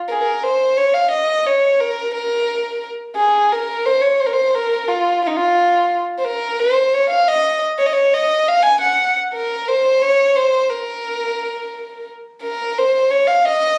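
Soulful and hypnotic, this short Turkish excerpt in 9/8 at 175 BPM, in B-flat makam nihavent, features a lone dark violin played close and up front from 0.1 to 13.8 seconds, its soft-attacked sul tasto tone carrying an airy bow and light vibrato through a moderate studio ambience captured on a phone in the room.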